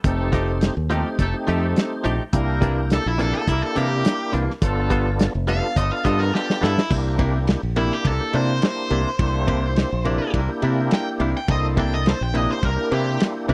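Rollicking and soulful, this straight-eighth soul blues excerpt pairs a muffled, gritty drum kit, up-front fingered bass and a full tonewheel organ on slow rotary speaker with chorus vibrato, while a twangy clean guitar with analog chorus and slapback echo plays stabs, a vintage horn section holds background chords, an overdriven lead guitar with slapback echo takes the melody from 2.9 seconds, and a drum fill at 6.3 seconds leads into the repeat, all in a dry, close, 1970s-style small room.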